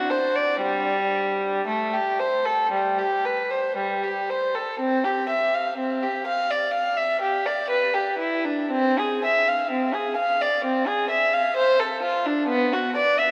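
Rubato in a slow 4/4 at roughly 56-66 BPM, this flowing, radiant fragment of a baroque-style suite movement is for a single unaccompanied violin, settling into C major from 4.8 s. The bowed solo violin, heard from 0.0 to 13.3 s between G3 and F5, has a dark, nasal, reedy gut-string tone in period style and sits up front. A cathedral reverb with a long 4.6-second decay surrounds the playing.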